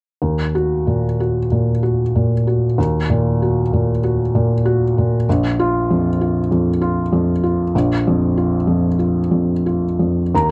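This neoclassical minimalist piano piece, cut from a longer work, unfolds in Eb minor at a rubato 96 BPM in 4/4, with an intimate, reflective mood. A felt-muted upright piano plays alone from 0.2 to 10.5 seconds, spanning Bb1 to Bb5. Its mellow, soft tone sits up front with audible action noise. The harmony moves from Ebm to a Bb5 chord at 5.3 seconds, and the dry, close 1970s-style studio sound carries only light reverb.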